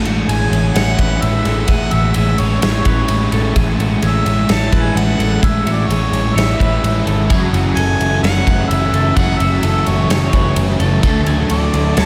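Over a straight 4/4 pulse from a huge, up-front arena drum kit with punchy kick, bright ride cymbal and snare, this wistful, dreamy shoegaze and dream-pop rock excerpt layers a round, foam-muted picked bass, a dark fuzz guitar riff in the background, an overdriven guitar riff trailed by reverse reverb, clean guitar arpeggios bathed in lush chorus and diffuse delay, and a smooth solo harmonica melody with ambient delay, while a double-tracked overdriven guitar riff joins at 7.3 s as the chords move from Amaj7 to F#m7 and Dmaj7, in a mix soaked in cathedral reverb.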